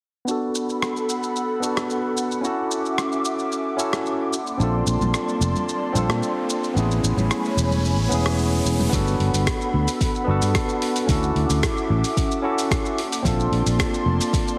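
A barky, bright tine electric piano sits up front in this smooth, relaxed sunset chillout excerpt, its clean tone run through a low-pass filter sweep, digital delay and shimmer reverb as it lays down the accompaniment. Beneath it, an airy, breathy pad with a soft, nasal, detuned edge holds sustained chords through chorus and shimmer reverb, while a dusty, gritty sampler-style kit ticks along on hi-hat, rim click and shaker. A growly, punchy fretless electric bass enters at 4.6 s, and background congas join shortly after as an electronic riser builds toward the change at 8.9 s. There a deep, layered electronic kick arrives to carry the second section over chords moving from Gmaj9 back through Dmaj9 and Bbmaj9. The whole fragment has a lush hall ambience yet a heavily compressed, radio-like sound.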